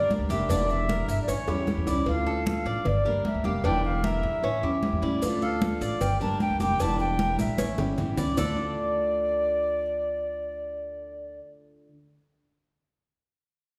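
Bathed in the reverb of a resonant recital hall, this danceable, nostalgic Cuban son and guajira excerpt at 152 BPM in D harmonic minor sets an airy, crisp-attacked silver concert flute melody up front over a dark, old-stringed picked acoustic guitar, metallic double-strung tres arpeggios and a growly, thumpy pizzicato upright bass, while bright, hard-handed congas, tight high-tuned cowbell and bongos in the background, and grainy maracas, which drop out between 2.1 and 5.2 s, play until the percussion stops at 8.5 s, with drum fills at 1.5 s and 7.4 s over a chord cycle of Em7b5, A7, Dm and Gm.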